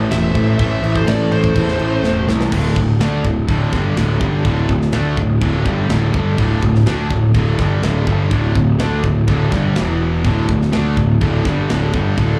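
Relentless and dark, this heavy metal passage, cut from a longer piece, drives at 124 BPM in a straight 4/4, heard as a live gig through the venue's PA with a touch of club reverb. A growly, fuzz-laden picked bass sits up front, while three rhythm guitars pound out riffs throughout: a bright, compressed distorted guitar and a bright high-gain guitar in the background, plus a very quiet, double-tracked overdriven guitar with a crunchy, warm edge. At the opening, a dark high-gain lead guitar carries a short melody with delay from 0.1 to 2.2 seconds, shadowed by a very quiet second lead line beneath it. A tight acoustic drum kit with bright cymbals, a medium-tuned snare and a tight kick plays a fill at 2.0 seconds that launches the second section at 2.5 seconds. From there the riffing moves from an A minor opening to D5, briefly touching E5 before settling back on D5.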